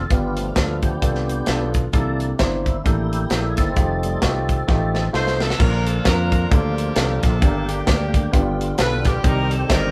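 A live-in-one-room sound with moderate studio reverb opens this short excerpt of uptempo gospel in Bb major, moving at 131 BPM in 4/4 with a swung eighth-note feel and a reverent, uplifting mood. A full, lightly overdriven tonewheel organ takes the lead from the start, holding sustained chords through a slow rotary speaker and chorus vibrato as the harmony moves through G7, C13 and F9. Underneath, a punchy fingered electric bass, played direct and amped, and a concert grand piano with a deep low end fill out the accompaniment. The tight funk drum kit sits up front with a mid-forward, rolled-off top, a medium-tuned snare and a snug kick, and it plays a fill from 4.7 to 5.6 seconds that leads into the next section on a Bb chord. At 5.1 seconds an edgy saxophone section enters with the melody, tight and present with light vibrato in a jazz style, carrying the passage through Gm, G7 and Cm to the end.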